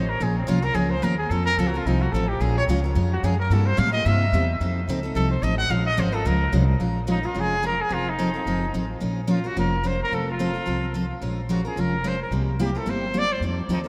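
Virtuosic and swinging, this short cut of acoustic string swing has a distant, roomy trumpet with light vibrato taking a solo through the first 6.8 seconds over a bright, full-bodied picked steel-string guitar and a woody, thumpy pizzicato upright bass on gut strings, the trio set in a vast, echoing cathedral space.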